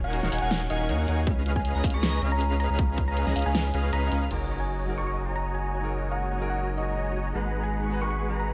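In a lightly reverberant mix, this bittersweet, dreamy half-time future bass passage sets a round, tine-like FM pluck melody with cassette-tape colour and tape echo over a huge, detuned supersaw riff and a deep, saturated sub bass that both pump with the sidechain, while an airy lead and a ringing concert harp play dub-echoed arpeggios in the background, a big-room dance kit with a huge snare and a hard-clipped, overdriven electronic kick drive the opening drop, and at 4.3 seconds a clear grand piano enters over a very quiet sub drop, joined at 5.6 seconds by a shimmering, ethereal pad.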